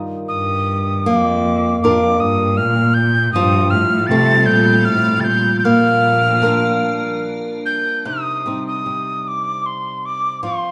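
Bathed in a wet recital hall reverb, this mournful, longing Celtic slow air in C dorian moves in a loose, rubato 3/4 around 77 BPM. A fingerpicked flamenco guitar with fresh strings sits up front as accompaniment, while a breathy, mellow metal whistle carries the tongued melody with vibrato and chiff, and a rich bowed cello adds an expressive second line with vibrato and portamento until 7.2 s. From 4.1 s an icy, crystalline glass pad with chorus and a slow attack holds sustained chords until 8.0 s, just before the harmony settles on C minor.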